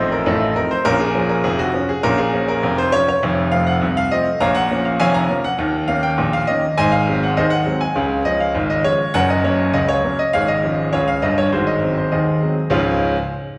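A bright baby grand piano opens this short ragtime excerpt alone, playing in a straight 2/4 feel that sounds lively and playful. Its tone is brilliant and open, with long sustain, and it sits up front in the sound, reaching from F1 down low to Bb5 up high. The harmony moves from an F7 over A through B-flat minor and F, then passes Eb5 and Ab7 before settling on Db at 8.0 seconds, touching Gb and returning home through Ab7 to a final Db at 12.7 seconds. A wet recital-hall reverb surrounds the instrument, giving it the spacious ring of a church or concert hall. The clip runs to 13.2 seconds, cut from a longer piece.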